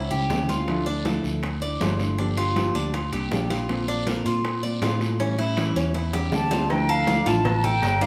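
A drum fill opens this nostalgic Cuban son and guajira excerpt at 159 BPM in D minor, as a metallic, double-strung Cuban tres plays arpeggios over an up-front, amped picked electric bass, joined by a full-bodied, fingerpicked nylon-string guitar, very quiet round bongos and cowbell, damped congas, a raspy guiro and ringing, distant timbales and agogo bells, before an airy silver concert flute with vibrato takes the melody at 6.3 s, the whole band heard playing live in one room under wet studio reverb.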